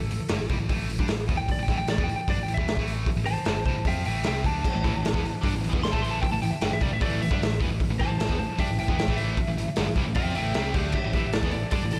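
A straight 4/4 hard rock pulse at 152 BPM drives this aggressive, heavy cut from a longer piece in A minor, sitting on an A minor chord throughout. A raw garage drum kit enters at 0.1 seconds, up front with a boomy kick, medium-tuned snare, dark cymbals and hi-hat, its sound saturated and gritty with a pumping small-room character and a rolled-off top. Beneath it a picked electric bass runs from G1 to G2, growly, punchy and amped, while a bright high-gain distorted guitar plays a riff in the background from the start. A lightly driven lead guitar carries a solo melody from G4 to C6 across the full twelve seconds, slightly broken-up and compressed, with a slapback echo. At 4.7 seconds two more riff guitars join: a bright overdriven one with its own slapback echo, and a very quiet double-tracked sludgy guitar. Light reverb and small room ambience frame the whole.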